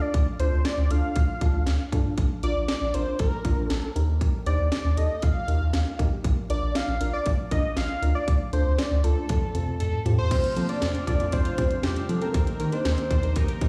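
A round, deep analog bass and a punchy, overdriven house drum kit drive this wistful yet upbeat synth-pop excerpt, with a thick, detuned unison lead carrying the melody through tape echo over a dreamy, warbling FM electric piano with a soft pad layer, until a drum fill at 9.3 seconds leads at 10.3 seconds to the entry of chiffy pipe organ flute stops holding sustained chords and a bright, chorused analog pluck playing arpeggios in the background, all heard as if played on a big sound system in a bare stone room.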